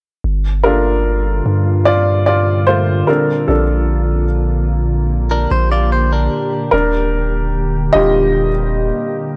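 Contemporary R&B at a slow 74 BPM, this romantic, smooth fragment from a longer piece puts an intimate baby grand piano up front, its action noise audible as it leads over a deep, mellow 808-style bass, a glassy, ethereal FM pad with ensemble chorus that fades in at 1.1 seconds, and a bright, twangy, direct-recorded clean electric guitar picking arpeggios from 5.3 to 6.7 seconds, moving through Gm7, Bbmaj7 and Ebmaj7 in a dry, gritty recording with light reverb.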